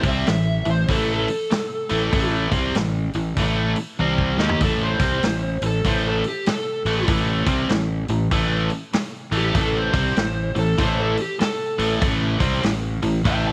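An overdriven slide guitar takes the solo across the whole 13.5-second cut, its fingered lines touched with slapback echo above a biting, bright rhythm guitar riff that is double-tracked and up front. This is raunchy, swaggering blues rock with a southern rock edge, moving at 97 BPM in 4/4 with a swung eighth-note feel over an A5 chord, while a dark, round fuzz bass and an acoustic vintage drum kit with a punchy kick and rolled-off top hold the groove. A drum fill arrives at 4.0 seconds, and the power trio sits in a small room ambience.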